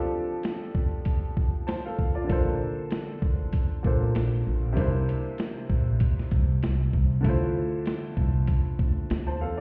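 A swung 97 BPM boom-bap groove in 4/4 and D minor drives this reflective, moody hip-hop excerpt: a clear, intimate upright piano with audible action noise and filtered tone opens alone over F6, a gritty, compressed, pitched-down sampler drum kit with a thumpy kick and high-tuned snare enters up front at 0.4 s, and a dark, woody pizzicato upright bass on gut strings joins at 2.3 s as the chords move through Bbmaj7, C7 and Dm7, all heard muffled as if through a wall, with stone room reverb and vinyl crackle.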